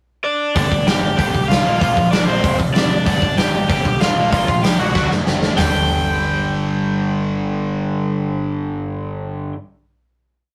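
Punk rock with a rowdy, upbeat drive, where a cranked, overdriven lead guitar opens alone on a hook-driven pickup partly doubled in octaves, then a double-tracked, palm-muted rhythm guitar, a growling bass pumping eighth notes in the background and a punchy big-room drum kit crash in for a fast verse that ends in a drum fill before a final chord rings out at 5.6 seconds, all captured in a rough rehearsal-room sound with saturation and a faint mains hum.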